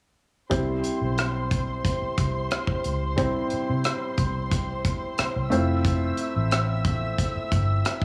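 Cmaj7 opens this short, lush 1970s-style soul fragment at 0.5 seconds, where a warm concert grand piano with audible action noise, a dark, round fingered electric bass, and a drum kit of punchy kick, hi-hat and rim click all begin together in an unhurried straight 4/4, moving to Fmaj7 at 5.5 seconds. Above the piano, a muted studio string section adds a veiled, con sordino second line with soft-attack bowing and vibrato, both piano and strings carrying a cassette tape coloring. The whole sits in a small room with light reverb and a homespun, intimate cassette quality, the bass stopping at 7.8 seconds just before the others.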